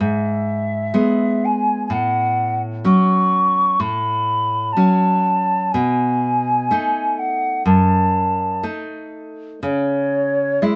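Light reverb colours this recording of a duo playing live in one room, a short section cut from a longer romantic piece for flute and classical guitar tuned to A4 = 443 Hz. At a rubato 62 BPM in 4/4, the silver concert flute sings a tender, lyrical melody between C#5 and C#6 with a pure, hollow tone, vibrato and a crisp attack, while the fingerpicked nylon-string guitar supplies full-bodied, deep accompaniment. The harmony moves from E/G# through F#m/A to B7, arriving on C#5 at 9.6 seconds.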